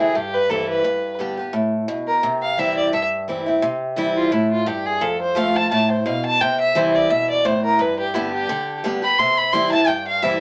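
Lively and driving, this bluegrass excerpt in C major runs at 173 BPM with a lightly swung eighth-note feel, moving from C through Gadd9, F and G before settling back on C. Up front, a single bowed fiddle carries the melody with a dark, woody tone and light vibrato, while a picked old ladder-braced acoustic guitar accompanies in a boxy voice colored by old strings. Both play the full 10.4 seconds in a studio reverb with a short, wet tail.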